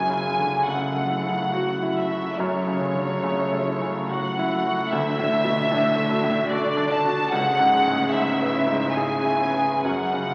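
Cinematic and sorrowful, this moving 10.3-second excerpt from a longer piece sways in 3/4 at 72 BPM with uneven, rubato beats in F# minor, passing from F#m7 to D at 4.9 seconds and C#m7 at 7.3 seconds. A clear, smooth violin section carries the bowed melody up front with even vibrato, over a brilliant, polished grand piano accompaniment and ringing, thumb-plucked concert harp arpeggios, while a rich, focused cello section holds the bass. The whole sits in the generous reverb of a scoring stage, coloured by the crackle of a very old 78 rpm record.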